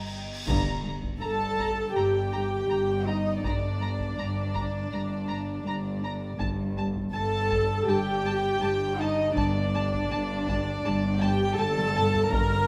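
Up front, a dark viola section plays a close, intimate accompaniment from 1.2 seconds in this mysterious, ominous suspense cue in G minor at 81 BPM, cut from a longer cinematic score. A huge cymbal swell and impact opens the passage, and a taiko ensemble with heavy sticks enters at 0.5 seconds alongside a floating cello riff, while a distant, woody violin melody sits over a pure violin second line and shadowy cellos and mellow double basses hold the bass in the background. The strings are bowed sul tasto, with lush vibrato on the melody, the taiko play a drum fill near the end, and a moderate scoring stage reverb surrounds the ensemble.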